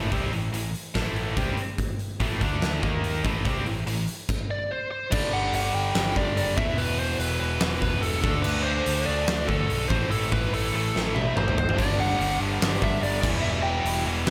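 A huge arena drum kit with a fat snare and punchy kick sits up front in this driving, heavy hard rock excerpt, where a biting lead guitar carries the melody from 4.5 seconds over a round, dark picked electric bass and a background wall of scooped and heavy high-gain riff guitars plus a crunchy, double-tracked overdriven guitar that drops out at 4.0 seconds and returns at 11.8 seconds, all set in a lush hall reverb with slapback echo on the guitars and a drum fill at 10.9 seconds.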